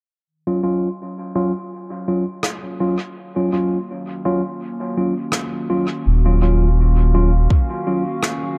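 Light small-room reverb frames this spacious, meditative ambient dub fragment, where a warbling, nostalgic tape-like pad fades in with dark, detuned sustained chords through chorus, clean tine electric piano stabs sit up front through a low-pass filter and dub echo, a natural brushed rim click enters at 2.4 seconds with its own echo, a round, soft sub bass arrives at 6.1 seconds, and a deep, layered electronic kick lands briefly at 7.5 seconds.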